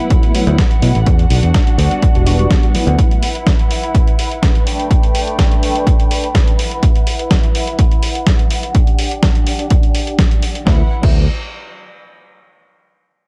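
A dry, dark-toned production frames this sunny, funky filtered disco house excerpt under a filter sweep across its first 10.7 s: a punchy, tape-warm electronic kick sits up front beside a gritty, compressed sampler-style kit of crash, hi-hat and medium-tuned snare, while a close, woody bowed violin section holds sustained vibrato chords through a low-pass filter and sidechain pumping until 10.9 s, and a clean, phased tine electric piano through a combo amp and a growly, bright, tube-saturated fingered bass, both pumping and low-passed, play only briefly at the opening before returning at 10.7 s.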